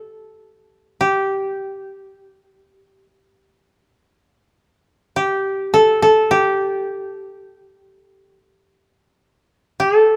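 Japanese traditional music, calm and austere, in a free, rubato 4/4: a solo koto, plucked with fingerpicks, plays alone for the full 10.2 seconds within the narrow span of G4 to C5. The instrument sits up front with a mellow, woody, dry tone, set in a light reverb, and the clip is cut from a longer piece.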